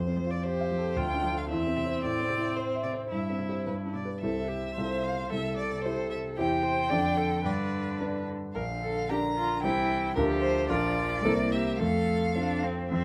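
In a quick, rubato 2/4 at 111 BPM, this lively, spirited classical-period piano quartet excerpt moves from C major into F major at 8.6 seconds, with a focused, vibrato-laden bowed violin carrying the melody up front over a deep-bassed, vintage-toned concert grand accompaniment, a smooth, even viola filling in the harmony from 0.4 seconds and a cello sounding a second line in the background from 0.2 seconds, all set in light reverb.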